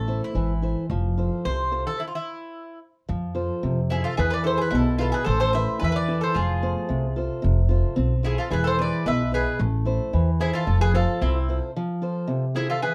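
Dark, moderately reverberant studio sound frames this brooding Greek folk excerpt at 111 BPM in a straight 2/4, where a mellow, metallic bouzouki with some octave-doubled strings carries the melody up front over a boxy picked archtop guitar and a woody pizzicato upright bass moving through Am, F and E, all halting for a stop from 2.0 to 3.1 seconds before a bright double-strung mandolin adds a second line from 3.9 seconds.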